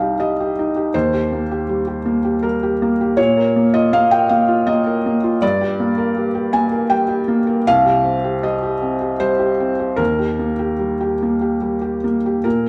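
A wet stone room lends this recording a 1.2-second reverb tail, with a single felt-muted upright piano sitting up front as if played live in the space. This short excerpt of neoclassical minimalist piano feels intimate and melancholic, moving in 3/4 at roughly 72-82 BPM with a loose, rubato pulse. The piano plays solo from start to finish, spanning C2 to Ab5, and its thin felt gives it a soft, mellow, vintage tone in which the audible action noise becomes part of the texture. The harmony circles through Cm, Eb, Bb5 and Gm before returning to Cm at 7.7 seconds and Eb at 10.0 seconds. The piece reads as one unbroken section, and it ends at 12.7 seconds.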